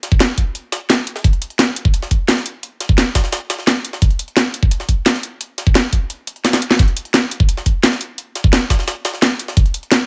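A straight, driving drum and bass groove in 4/4 carries this aggressive, dark excerpt from a longer piece, built entirely from layered percussion. Up front, a knocking electronic kick drum sits with a produced drum and bass kit of cracking snare and bright hi-hats, both re-recorded in a small room, while a gritty, pitched-up jungle sampler-style kit with a high-tuned snare and filtered, tape-warm hats stays compressed in the background. The mix is dry, and a short drum fill breaks the pattern at 6.4 seconds.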